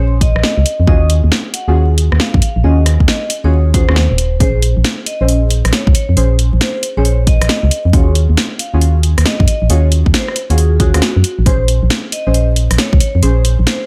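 A bright, ringing vibraphone struck with medium hard mallets opens this bouncy, soulful two-step garage excerpt, carrying the melody over deep, soft chord stabs that sit dark and wave-folded, treated with chorus and phaser. Underneath, an organ-like FM bass sounds hollow and percussive, its fast attack decaying as it sits up front in the mix. At 0.2 seconds the drums arrive: a punchy electronic kick and a house kit of hi-hat, rim click and a cracking snare, both layered, tape-warm and re-recorded in a large room, with the kit placed up front. The swung sixteenths give the groove its skip, while a layer of vinyl crackle adds digital ambience. The harmony moves between Bbm9 and Ebm11, keeping a mellow soulfulness until the piece is cut off at 13.9 seconds.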